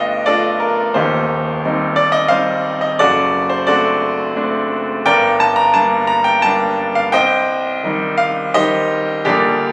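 Classical romantic character piece for solo piano, a brief fragment of a longer work in 3/4 that moves with a stormy, brooding rubato over its 9.7 seconds. The bright grand piano sits up front with a brilliant, polished tone, long sustain and audible action noise that lends it an intimate presence as its dark harmonies settle from Gm to Cm. The sound carries a moderate recital hall reverb, with club reverb and compression layered over a phone recording made in the room.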